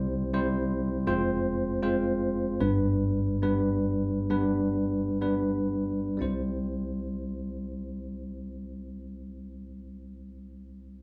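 Heartfelt and intimate, this short folk excerpt in 4/4 features a bright, bell-like tine electric piano playing accompaniment up front and clean, moving through C, Fm and G before returning to C at 6.2 seconds as the opening passage slows down, all set in the wet bloom of a large studio reverb with the feel of a band playing live in one room.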